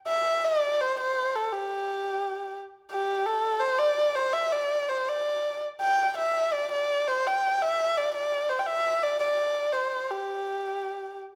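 In a free rubato over a loose 2/4 pulse near 84 BPM, this pastoral, festive fragment of Chinese traditional chamber music is a single up-front erhu playing alone from 0.1 to 11.2 seconds, spanning G4 to G5 in the G zhi mode at A4 = 439 Hz, its intimate bowed tone carrying light vibrato, soft attacks, gliding portamento and an airy bow inside a moderate recital-hall reverb.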